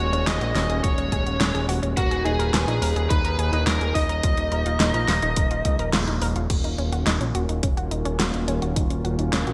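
A fat, saturated analog bass drives this cinematic, nostalgic synthwave excerpt in Eb minor at 106 BPM, with a punchy layered electronic kick and a pop drum kit of gated-reverb snare, hi-hat and crash beneath a dark, overdriven lead guitar melody with digital delay, while a dreamy FM electric piano with a soft pad layer carries a second line, and a smooth, sidechain-pumped analog pad and round, chorused pluck arpeggios sit in the background, before the guitar and piano stop on a band accent at 5.9 seconds and the bright 1980s-style production moves to an Ebm7 passage.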